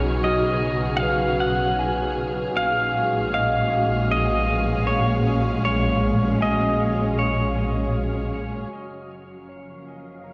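Weightless and serene, this ambient fragment floats a twangy, fingerpicked pedal steel guitar melody with slide, volume swells and tape echo over lush, woody bowed strings, a soft-attack chamber double bass section, barky, gritty overdriven tine electric piano arpeggios through tape echo, a very quiet detuned bowed-like drone and a breathy wind-like noise texture, set inside a dark hall reverb, with the steel falling silent at 8.3 seconds, just before the final chord change.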